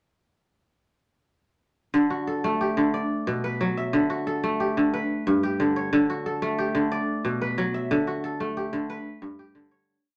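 A solo kora enters at 1.9 seconds, fingerpicked, crisp and ringing up front in a moderate studio reverb as it spins a joyful, hypnotic interlocking ostinato in this brief West African traditional piece, moving through D, B minor and G in a straight 12/8 at 121 BPM in D major, before a fade-out from 7.9 to 9.9 seconds.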